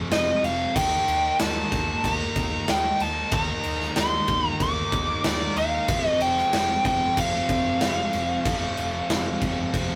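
Hard rock at 94 BPM, aggressive and menacing, cut from a longer piece and built on F5 and Eb5 power chords from three picked rhythm guitars: a bright overdriven cranked stack, a tight distorted guitar and a very quiet, double-tracked, scooped high-gain part, all sitting in the background. Up front, a dark, nasal lead guitar with a parked wah carries the overdriven melody high above, while a round, hollow-body short-scale bass supplies the low end and a big acoustic rock kit drives with a punchy kick, medium-tuned snare and bright crashes. The rough rehearsal-room sound carries light reverb and warm saturation.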